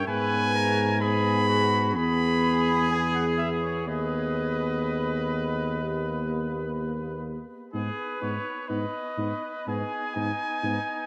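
Classical brass quintet music in G# minor at a slow 63 BPM, this heroic, grave excerpt moves through G#m, E and D# harmonies before settling back on G#m, all within a vast, echoing cathedral reverb. An up-front mellow trumpet carries the melody with light vibrato while a clear, distant second trumpet sings beneath it. A dark French horn and a close-miked euphonium with vibrato sit in the background as accompaniment over a roomy, up-front tuba bass line, and these three lower parts fall away at 10.8 seconds as the trumpets ring on to 11.1 seconds.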